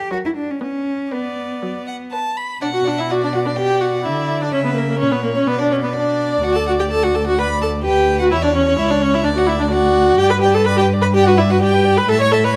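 A quick, lively and graceful classical-period string quartet movement in B minor at 126 BPM, cut from a longer piece, in which the close, up-front bowed cello begins the bass line at 0.0 s and is joined at 0.1 s by a focused first violin singing the melody with vibrato, a clear, smooth second violin tracing a second line, and a rich, even viola accompaniment placed prominently forward, captured with detailed close microphones and light reverb as the harmony moves from B minor through D and C# minor to G.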